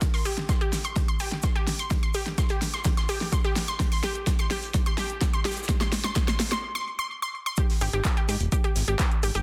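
Uplifting and hopeful, this 127 BPM progressive house excerpt rides a punchy, overdriven electronic kick and an overdriven deep house kit of handclaps, snare and metallic hats through a Gsus4 build-up and drum fill, with a high-pass-filtered acoustic kit of hi-hat, shaker and snare tucked in the background and a bright analog pluck arpeggiating between G4 and C6 through chorus, delay and sidechain pumping, before a short break gives way at 7.6 seconds to an Ab5 drop where a thick, detuned analog bass with its own sidechain pump enters at 7.8 seconds, all under light reverb in a dense, heavily limited master.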